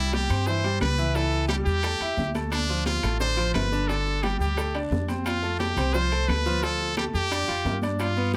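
A forceful solo trumpet sits up front, with a brilliant, punchy, pop-style tone, vibrato and scooped notes, carrying a joyful, festive salsa melody in this short cut from a longer piece. Beneath it, a grand piano plays open, long-sustaining accompaniment, while a dark, thumpy upright bass with gut strings is plucked pizzicato and sits up front with a woody weight. Most of the percussion enters at 0.1 seconds: high-tuned congas with a thin-skinned snap played with hard hands in a distant large room, ringing metal-shell timbales with a vintage, band-limited colour, and round, low-tuned bongos, compressed and saturated, played with soft hands at a very quiet level. Very quiet touches fill in the texture, with raspy guiro close and dry, grainy, mellow maracas set further back, and claves, also close and dry, joining at 0.3 seconds. The harmony moves from C through A7/C#, Dm7, Gsus2 and Fadd9 before settling on Dm, all in light reverb with close, detailed miking.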